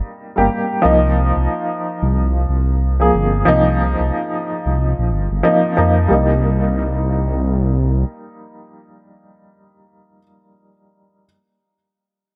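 Trip hop at 91 BPM in C minor, smoky and brooding, with a swung 16th-note feel in this excerpt from a longer piece. A worn, woody upright piano, slightly detuned and up front with tremolo and tape echo, plays accompaniment chords moving from a rootless Cm7 to Ab69 and back to Cm7, while a deep, rumbling detuned saw bass with a beating, sustained tone enters at 0.4 seconds and drops out at 8.0 seconds. The mix sits in a small room with light reverb, and the piano carries on alone until 11.3 seconds.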